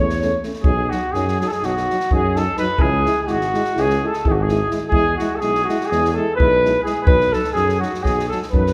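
Driven by a brisk, straight 9/8 pulse, this short, festive Balkan brass band passage bursts with exuberance. A warm, up-front flugelhorn carries the melody while a soft-attack trumpet sits farther back on a second line. Mellow euphonium and trombone, both touched with vibrato, accompany in the background over a mellow tuba bass, all moving through A, B, C#m and E. An airy, polished jazz drum kit with a boomy kick and medium-tuned snare stands forward, while the horns ring out in a roomy recital-hall reverb.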